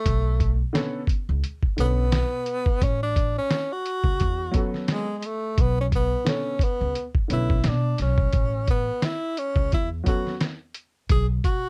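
Jazz-hop with a cool, relaxed hip hop feel, this short cut from a longer piece moves at 87 BPM in A major with a swung 16th-note groove, shifting between Bm9 and A69 chords. A breathy, close-miked tenor saxophone solos up front for the full 11.7 seconds, its subtone and vibrato sitting over a woody pizzicato upright bass and a compressed, tape-warm, sampler-style drum kit with a thumpy kick, fat snare and hi-hat. A slightly detuned upright piano adds accompaniment from 0.7 to 10.3 seconds, all wrapped in light reverb and a dark, warm production.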